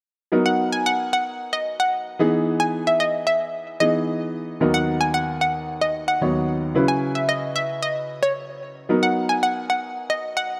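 A bright, vintage-toned grand piano opens at 0.3 seconds in this upbeat, carefree pop excerpt in B major at 112 BPM, soon joined by an up-front analog pluck with a round sawtooth-and-square edge, fast filtered attack, noise layer and chorus carrying the high melody over chords moving through Bmaj7, Emaj7 and F#7sus4, all bathed in a moderate plate reverb.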